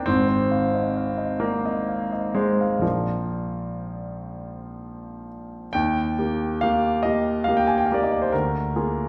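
Tender and serene, this brief passage cut from a longer classical piece is a romantic nocturne for solo piano in E-flat major, unfolding in a slow, rubato 12/8 at roughly 40-48 beats per minute. A warm grand piano with long sustain carries everything alone, ranging from deep bass to the upper middle register, with harmonies moving from Ab6 through Bb to Eb at 5.7 seconds, where a new section begins, and settling on Bb7/D near 8.3 seconds. The piano sits up front, yet a wet recital-hall reverb places the listener further back in the room.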